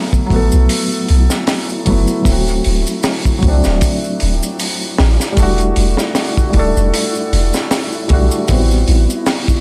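A swung breakbeat in 4/4 drives this cinematic, melancholic trip hop fragment, its crunchy drum kit pairing a punchy kick with a high-tuned snare and hi-hat in a small, dark room, saturated and rolled off at the top. Maracas played with hard hands stay in the background, while a round, sine-toned 808-style bass rests up front from 0.3 seconds, deep and decaying after each fast attack. A felt-muted upright piano carries the chords, intimate and mellow with audible action noise, coloured by harmonic tremolo, vintage 12-bit sampler grit and tape echo. Behind it, a flickering, granular texture hovers on E4 with a slow attack and long release, detuned and bathed in its own reverb. The harmony moves from B7sus4 through D9 and Em11 to Am9 before the passage is cut off at 9.6 seconds.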